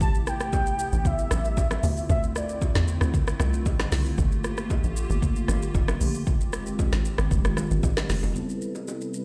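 Deep and soulful, this amapiano cut moves at 115 BPM in a straight 4/4, opening on a drop where a velvety, detuned sawtooth lead with chorus and digital delay sings a brief melody for the first 2.8 seconds over a hollow, flute-like pad that pumps with sidechain through an ensemble chorus and low-pass filter. An up-front electronic deep house kit with a deep kick, woody snare, smooth hats, rim click and shaker drives the groove alongside a tight, punchy FM log drum bass, while congas and bongos played with soft hands sit saturated in the background. Chords cycle from Am9 through Dm9, Gm9 and Fm9 back to Am9, and at 8.3 seconds a biting, barking FM electric piano with phaser enters as the bass drops out, all set in a stone room reverb that sounds like a big sound system in a bare room.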